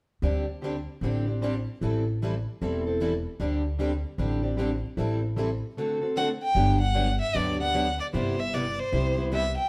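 Recorded live in one room, the band sits in a moderate stone-room reverb in this lively, charming jazz manouche extract, cut from a longer piece. Two picked steel-string acoustic guitars share the swung accompaniment, one plugged in with fresh strings and the other boxy with audible finger squeak. Beneath them, a woody, thumpy pizzicato upright bass on gut strings sits up front as the chords move between D7sus4 and Am7. At 6.2 s a warm, bowed violin enters close to the ear, carrying the melody with vibrato, portamento and a soft attack just before the harmony turns to Gmaj7.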